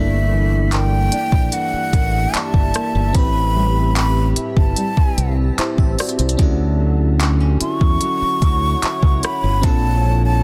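A breathy flute melody with vibrato floats over glassy, chorused FM electric piano, dark thumb-plucked nylon-string guitar arpeggios, a bright fingered electric bass up front and a cloudy granular pad with built-in reverb in the background, before a smooth electronic R&B drum kit of soft kick, hi-hat, rim click and handclaps enters at 0.7 s in this dreamy, tender contemporary R&B excerpt at 74 BPM in D major, moving from Gm6 through Am7 and Dmaj9 to Bbmaj7 in a dry, dense, heavily limited master.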